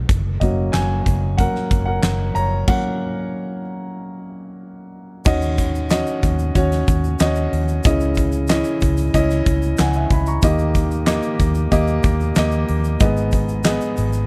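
A straight 4/4 groove at 93 BPM drives this dramatic, earnest piano-driven pop excerpt, where an up-front concert grand piano with deep bass carries the harmony over a dark, round, foam-muted electric bass and a huge arena drum kit with a punchy kick, fat snare, handclaps and bright crash and hi-hat. After a stop at 2.7 seconds, a grainy egg shaker enters in the background at 5.2 seconds, and the piano adds a fill at 9.5 seconds as the chords move through D#m7, C#madd9 and D# to G#m, all in a dry mix with little reverb.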